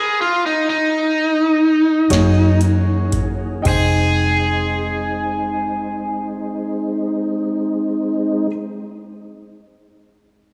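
A slow blues in 12/8 with a straight feel, moving at roughly 37-44 BPM in dotted quarters and slowing down through its opening seconds, this brooding, soulful excerpt sits in F minor. An overdriven electric guitar carries the melody unaccompanied at first, its bright, picked, compressed tone up front and touched with slapback echo. At 2.1 seconds the band enters on a Gb7 chord: a clear upright piano comps with a woody, intimate sound and audible action noise, a mellow tonewheel organ holds sustained chords with key click, chorus vibrato, light overdrive and a slow rotary speaker, and a vintage muted fingered bass lays down a dark, round, foam-muted low end. A booming analog drum machine with a deep kick, crisp snare, metallic hats and crash cymbal plays only until 3.9 seconds, just after the harmony settles onto Fm9 at 3.7 seconds. A lush hall reverb gives the whole mix a big arena sound alongside small room ambience.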